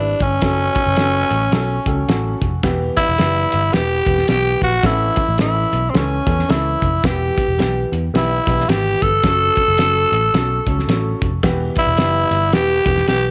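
A swung 4/4 groove at 109 BPM drives this passionate, uptempo 1960s-style soul piece in E dorian. A cloth-damped, thuddy drum kit of hi-hat, tight kick and fat snare sounds saturated and rolled-off, sitting with a dark, round, foam-muted picked electric bass. Up front, a raspy, growling tenor saxophone carries the melody with light vibrato, while an intimate baby grand piano with audible action noise accompanies through F#m, Em and A and adds a fill from 1.0 to 2.6 seconds, all bathed in moderate spring reverb in this passage cut from a longer performance.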